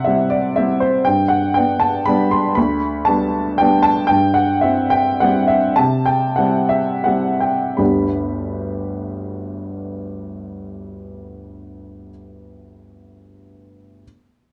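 A woody, slightly detuned upright piano with a vintage, up-front character carries this sparkling, playful classical waltz in G major, moving in a rubato 3/4 between 77 and 126 BPM across a range from G1 to C6. The harmony moves from C to G and C/G, with the tempo slowing from 3.3 to 7.8 seconds before a second section opens on G. A moderate large-studio reverb and a dark production frame this short cut from a longer piece.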